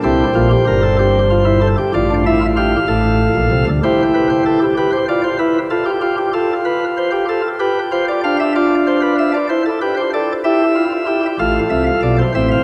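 Classical baroque-style four-part fugue for solo chamber organ, solemn and serious in 12/8, cut from a longer piece. The organ's flute stops sound sparkling and light, with a distinct chiff, sitting up front across a range from deep pedal tones to clear upper lines. A cathedral reverb with a long 4.7-second decay surrounds the playing, and the music shifts into a new section at 11.4 seconds just before the 12.6-second cut.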